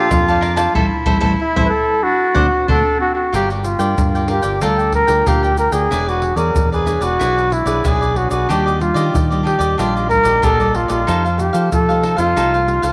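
Yearning and bittersweet, this excerpt from a longer samba and choro piece moves at 93 BPM in a straight 4/4 feel in G minor. A dark, breathy trumpet carries the melody up front with vibrato, soft attacks and scooped notes in a jazz style, trailed by tape echo, while a clear, classical-style clarinet plays a second line only through the opening 3.3 seconds. Crisp, picked cavaquinho and a thumb-plucked nylon-string guitar sitting in the background supply the accompaniment, and a punchy fingered electric bass anchors the low end. Egg shaker, tight surdo, pandeiro and tamborim, played with hard hands and heard close and dry, drive the rhythm, with a band accent from 0.8 seconds and a drum fill leading into the second section at 3.3 seconds. The harmony drifts from Bbmaj7 through Am7 and D7 into Gm7, then on to E6, Ebmaj9 and F9, all inside a wet echo chamber reverb.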